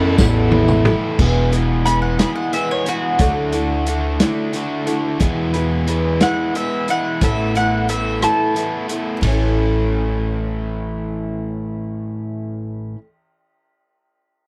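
Folk rock and heartland rock in a hopeful, open-road 6/8 at 60 BPM in A major, where a breathy bass clarinet, a quiet bowed string section with a reedy gut-string tone, and a jingly background tambourine open the excerpt over a drum fill from a muffled vintage kit with dark cymbals, before a bright, woody mandolin takes a solo from 1.2 to 9.2 seconds above a boxy, old-stringed ladder-braced acoustic guitar, a crunchy double-tracked overdriven guitar riff and a thumpy pizzicato upright bass sitting up front, all captured in a dry, close 1970s-style studio sound.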